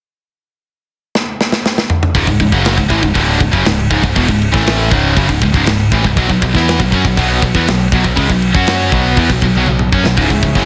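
A straight 4/4 heavy metal pulse at 120 BPM in C# minor drives this relentless, dark excerpt. It opens with a tight, up-front acoustic drum kit whose fill leads in toward 2.1 s, with a medium-tuned snare, a softly clipped kick and bright cymbals. A growly, punchy picked bass joins at 2.1 s. Two distorted riff guitars follow: a double-tracked high-gain part up front and a second, fainter one in the background, grinding over C#m and B5. A biting, lightly vibrato-laden bowed string section slips in at 10.2 s, all within light reverb and a dense, heavily limited master.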